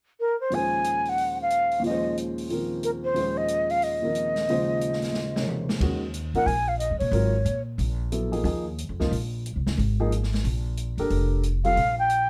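A breathy concert flute opens this spiritual, intense modal jazz excerpt at a brisk, swung 181 BPM. It is joined almost at once by an intimate upright piano with audible action noise, and by an open drum kit with dark cymbals and a boomy kick, heard in a small room with light reverb. A drum fill at 5.1 seconds leads into a second section where a thumpy, gut-strung pizzicato upright bass enters at 5.8 seconds, while the flute's expressive vibrato melody sits up front over suspended Eb harmony that moves to Fsus4 near the end.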